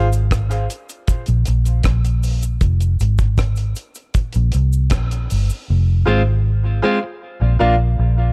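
A dark, warm production with small-room ambience frames this hypnotic, meditative dub reggae excerpt in a steady, straight four. A vintage foam-muted electric bass, round and amped, sits up front and holds the low end for the whole clip, moving through Fm, Gmadd11 and back to Fm. A deep acoustic reggae kit, dry and tight in the kick with a rolled-off top, keeps time on hi-hat, kick and rim click until about 5.5 seconds. Behind it, a close cabasa shakes quietly in the background. After the drums drop out, a woody, vintage-sounding upright piano returns with clear stabs at 6.1 seconds, joined by a clean, picked electric guitar, both trailing tape echo as the harmony shifts to Bb.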